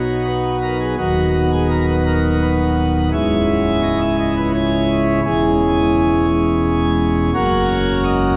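A cathedral reverb with a long 4.6-second decay surrounds this short excerpt of a classical, chorale-style piece, heard alone on a full, brilliant pipe organ plenum with mixtures and baroque voicing, placed up front. In 3/4 at 85 BPM with a rubato feel, the reverent, serene harmony moves from B through B/D# and C#m to C#m/E, arriving on F# at 7.3 seconds. The organ spans from a deep C#1 up to E5, tuned to A4 = 439 Hz.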